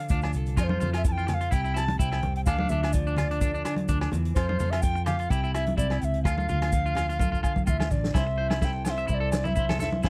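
Danceable and sunny, this highlife guitar band excerpt from a longer piece sets a reedy wooden flute melody over a clean, compressed electric guitar, a twangy, slightly broken-up guitar playing arpeggios through tape echo, a round, punchy muted bass, a tight vintage drum kit with a fill from 7.2 to 8.2 seconds, and background congas, ringing agogo bells and grainy maracas, all captured in a dry, close 1970s-style studio sound.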